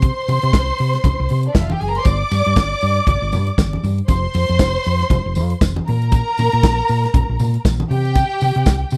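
Disco with a glamorous, driving mood, this short excerpt moves at 118 BPM in 4/4 with a light sixteenth-note swing. A modern studio drum kit sits up front with a punchy kick, a medium-tuned snare and hi-hat, while a hollow-body short-scale electric bass, played with the fingers, adds a dark, round, amped low end. A lush string section carries the second line with vibrato and a smooth, expressive bowed top, touched by a slapback echo. Congas with a thick skin sit in the background, and a jingly, band-limited vintage tambourine joins at 2.1 seconds. The harmony moves from a chordless opening through G5 and F5 power chords, returns to a chordless stretch, and lands on C5 near the end, all in a dry, close 1970s-style studio sound.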